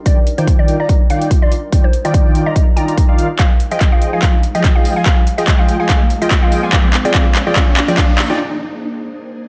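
A punchy, layered electronic kick sits up front in this euphoric, playful future bass build-up at 144 BPM in Eb major, driving a half-time feel with a light swing on the sixteenths. A big, fat polysynth carries the riff with a bold, detuned sawtooth tone and a moving notch, pumping against the kick, while a woody, round mallet-like pluck plays the melody with warbling vintage FM character, chorus and tape echo. Beneath them an ethereal, airy pad holds sustained chords in the background, colored by ensemble chorus, phaser and its own reverb, and both pad and polysynth are shaped by filter sweeps across the whole passage. A trap kit adds overdriven handclaps and metallic hi-hats, with a drum fill arriving at 3.4 seconds and a riser entering in the background at 5.3 seconds. The harmony moves from Ebmaj7 through Fm7 to Bb9. The drums, pluck and polysynth fall away by 8.4 seconds, leaving the pad to sustain through a brief break as this cut from a longer piece closes.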